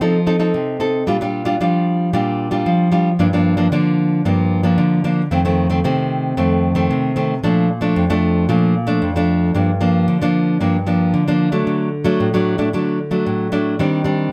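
A moderate studio reverb gives this short cut from a longer piece a sense of room around a bright, full-bodied nylon-string guitar placed up front. It is a festive, playful samba at 113 BPM in a straight 4/4, played entirely by the solo guitar, fingerpicked in a classical manner across a range from F2 to A4. The opening passage sits in Bb major, moving through F7, Bb6, Gm7 and Bbmaj7. At 9.5 seconds the music turns toward G minor, passing through Gm7 and D before arriving on a Cmadd9/Eb. The acoustic tone carries on until the clip ends at 14.3 seconds.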